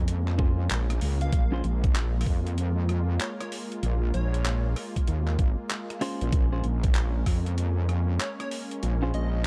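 Glitch hop at 96 BPM in Bb minor with a swaggering, playful swing, built on a single Bbm7 chord where a heavy, saturated wobble bass and a knocking, tape-warm electronic kick sit up front over gritty, overdriven sampler-style handclaps, hi-hat and rim click, while a smooth, warbling analog pad with sampler grit and sidechain pumping holds sustained chords, a clean fingered electric guitar drops delayed stabs from 0.4 to 1.6 seconds and again from 6.0 seconds, and a catchy, punchy detuned square-wave unison lead with delay sits in the background from 1.2 seconds, all in a dark digital ambience.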